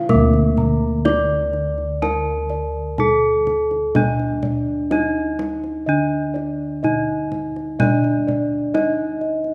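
Hypnotic and stately, this short cut from a longer Javanese gamelan piece moves at 62 BPM in a straight 4/4, with a bright, up-front bronze metallophone played with horn mallets carrying the melody, round, beating bossed gongs holding the bass, a second set of gongs tracing soft arpeggios in a boxy small room, a tight, band-limited kendang struck with hard hands, and a dry, close-miked metallophone with wooden mallets returning with arpeggios from 7.8 seconds, set within a wet scoring-stage reverb.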